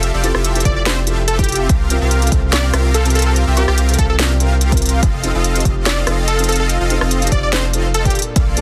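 A dry, dense and heavily limited mix opens this bright, lush future bass excerpt, which moves with a half-time feel and a light swing on the sixteenths. Huge, detuned supersaw chords carry the riff with analog chorus and sidechain pumping, moving from Fmaj9 through C7sus4 to F7. Beneath them a felt-muted upright piano adds soft, mellow, intimate accompaniment through tape echo, while a thick, saturated sub bass sits up front. A trap kit supplies sharp snare, rim clicks and crisp, tape-tinged hats from the start, and at 0.7 seconds an overdriven, punchy electronic kick arrives alongside a catchy, plucky unison lead. That lead blends sawtooth, sine and a noise layer with a filter sweep, pumping and tape echo, and it carries the melody until 8.2 seconds.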